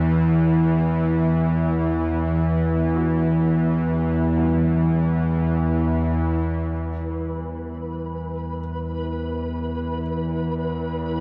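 Floating in free time with its tuning set to A4 = 435 Hz, this ominous, unsettling dark ambient drone piece is a short excerpt cut from a longer work, resting on an E minor chord. Up front, a tense, string-like bowed drone holds between E2 and E3, its sawtooth and sine layers sounding in unison with a noise layer, slow attack, long release, vibrato and a bright edge. Far beneath it, a very quiet baby grand piano plays clear, intimate arpeggios from G2 to F#4, with short sustain and audible action noise. At 6.7 seconds, a filter sweep on the drone opens the second section. At 7.1 seconds, a flickering, granular texture joins on B4, built from detuned triangle tones that fade in slowly and sustain. A cathedral reverb with a 5.6-second decay and a dark production surround the whole recording.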